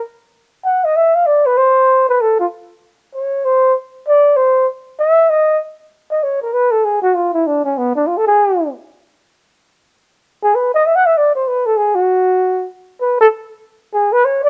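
A light reverb surrounds a single breathy flugelhorn that sits up front and close, giving this swinging, sophisticated jazz excerpt an intimate, whispered feel. At a brisk 194 BPM in 4/4 with a swung eighth-note feel, the flugelhorn carries the whole passage solo from 0.0 to 14.5 seconds, ranging from B3 up to F#5. Its tone is dark and vintage, with soft attacks, scooped notes and a light vibrato that lend each phrase a hushed, airy character. The solo falls into two matching phrases, the second beginning at 5.9 seconds and restating the shape of the first. The result is a poised, understated horn statement, cut from a longer piece.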